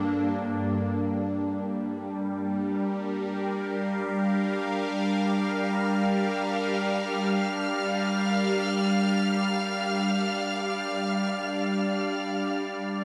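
Floating in free time, this melancholic, reflective ambient fragment is cut from a longer piece and drifts rather than pulses. An evolving wavetable pad sits up front, its detuned unison tones morphing slowly through sustained chords with a phaser and long release giving it a bright, shifting sheen. Beneath it, a calm organ-like drone blends sine and triangle tones with ring modulation, a moving notch and ensemble chorus, adding a gently hollow hum. At 4.9 s a dark studio violin section enters high above, its bowed ensemble sound lush and expressive with vibrato and portamento. The harmony settles from Bbmaj7/G to Gm7 at 0.7 s and lingers there. A huge, wet reverb with a long tail and the soft grain of cassette tape wrap the whole recording in a hazy glow.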